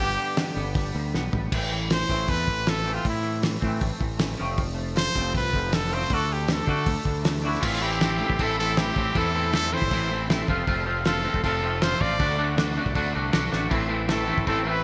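A bright, up-front trumpet carries the melody through this bittersweet, moody indie rock passage at 158 BPM in A minor, set in a bright 1980s-style digital production with a lush hall reverb and a touch of digital delay on the horn. Beneath it, a twangy, scooped clean guitar with analog chorus plays a riff, and a growling, punchy overdriven fingered bass holds down the low end. A raw garage guitar with overdrive and lush chorus sits in the background until 7.6 seconds and returns at 13.7 seconds, while a very quiet, mellow organ-like string ensemble sustains vintage chords. A cloth-damped, thuddy drum kit with a fat snare, dark cymbals and gated reverb enters at 0.4 seconds.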